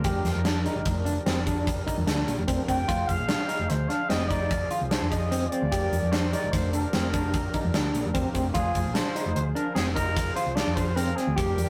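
From the first beat, a gated, polished drum kit with a tight kick and medium-tuned snare drives this tense, intricate progressive band piece in 7/4 at 148 BPM in F dorian. Around it sit a round, hollow-body fingered bass, a dark, slightly broken-up electric guitar playing compressed arpeggios with tremolo, and a bright, detuned sawtooth pad with chorus set in the background. Over the top, a distant, raspy trumpet carries the jazz-style solo melody with vibrato, scooped notes and digital delay, as the harmony alternates between Ebmaj7/F and Fm, all in a rough, saturated rehearsal-room sound cut from a longer piece.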